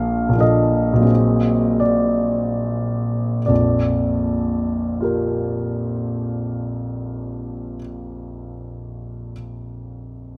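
A clear, intimate concert grand sits up front in a moderate recital hall, its deep bass and long sustain ringing out with audible action noise from the instrument. This dreamy, serene impressionist solo piano fragment in Bb major drifts in a rubato 3/4 at roughly 33-51 BPM, slowing through its opening 3.5 seconds over a Bbmaj7 that shifts to Ab9/Bb. At 3.5 seconds a new passage settles onto Bb6, and the piano, ranging from Bb1 to F5, plays on until 10.4 seconds in this brief cut from a longer piece.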